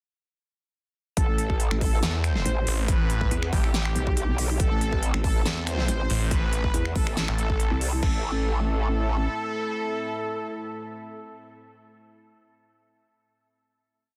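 A menacing, aggressive heavy wobble dubstep piece in A minor at 140 BPM with a half-time feel opens at 1.2 seconds straight into the drop: a punchy, overdriven electronic kick and a big-room kit with a huge snare, crisp hats, finger snaps and crash drive under an up-front, growling, detuned wobble bass with chorus, while an airy, smooth supersaw repeats a riff melody through cassette tape and dub echo. Sparse brass chord stabs in power voicing arrive with 12-bit sampler grit and echo, a bright, distorted sawtooth bass adds chopped phrases, and from 2.7 seconds a very quiet, morphing wavetable pad with phaser sustains chords beneath. The drums drop away around 8.1 seconds and the growl bass ends by 9.3 seconds, leaving the pad, brass and supersaw to hold a final chord in a dense, heavily limited, nearly dry mix.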